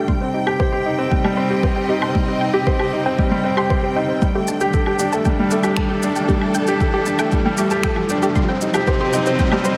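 A melancholic, intimate piano-and-strings electronica build-up, cut from a longer piece, opens with a woody upright piano riff with delay up front over bowed, vibrato-rich symphonic strings that pump to the sidechain. It is joined by a deep, layered electronic kick, high-passed woodblock, shaker and finger snaps, and a detuned sawtooth unison pluck with cassette-tape colour, delay and pumping in the background. A riser enters low in the mix at 3.1 s, all in a lush hall reverb as the chords move from Cm to Gsus2 and back.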